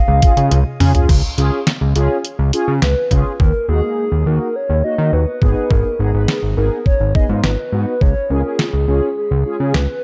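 A fat, detuned analog bass with sawtooth and square-wave bite and a filter sweep sits up front alongside a thumpy, sampler-style 8-bit drum machine, whose kick, snare, hi-hat, toms and crash drive this melancholic synth-pop excerpt at 104 BPM in a straight 4/4, with a drum fill from 0.5 to 1.1 seconds. Above them, a hollow, woody clarinet-like synth lead carries the melody with a soft, dark tone, vibrato and a sub-octave layer, treated with chorus, tremolo, shimmer reverb and tape echo. Mellow, round synth brass with ring modulation, chorus and shimmer reverb fills in quietly beneath as the harmony moves from Db to Ebm at 3.4 seconds, then to Abm and back to Db, all in a light digital ambience with a softened top end.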